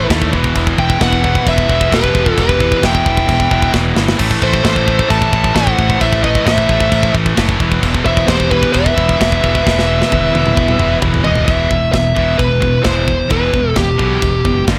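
Heavy metal in a straight 4/4, epic and dark, cut from a longer piece: an up-front, warm lead guitar carries the melody over a dark second lead line in the background that drops out at 11.0 seconds. Beneath them three picked, distorted rhythm guitars stack the riff, one heavy and bright, one scooped and very quiet, one double-tracked and compressed, while a growly, punchy bass and a tight, up-front acoustic kit with bright cymbals and china accents drive the chords from Em through Am to E5. Drum fills arrive at 3.7 and 9.7 seconds, the latter leading into a new section at 11.5 seconds, all in a light reverb.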